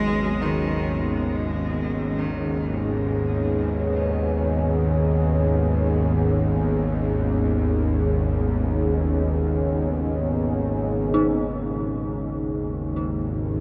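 Drenched in a huge, wet reverb with an 8.8-second tail, this desolate dark ambient drone in G# minor drifts in free time, a brief excerpt of a longer piece. A clear, focused cello carries a short vibrato melody with tape echo for only the first 1.3 seconds. Alongside it, a tense, string-like bowed drone sits up front in the low register, a deep, moody pad holds evolving sustained chords on G# minor, an eerie, inharmonic detuned synth bell spins chorused, trembling arpeggios with tape echo, and a metallic bronze singing bowl rings barely audibly throughout.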